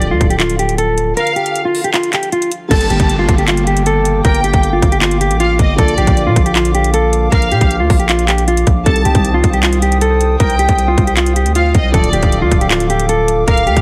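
Trap-inflected hip hop at 156 BPM in a half-time feel, this eerie, brooding cut in G minor rides a hard-clipped trap kit with metallic hats and handclaps alongside an aggressive, distorted 808-style bass, both up front, while a clean, fingered electric guitar carries the melody over a boxy grand piano in the background. A lush, distant violin section with vibrato and portamento enters at 1.2 seconds through a digital delay, the kick drops out until 2.7 seconds, and then a detuned, nasal analog pad with chorus arrives alongside a brief downlifter as the chords move from Gm through Bb and Cm to Dm. The mix is dry and dense, heavily limited, with a veil of vinyl crackle.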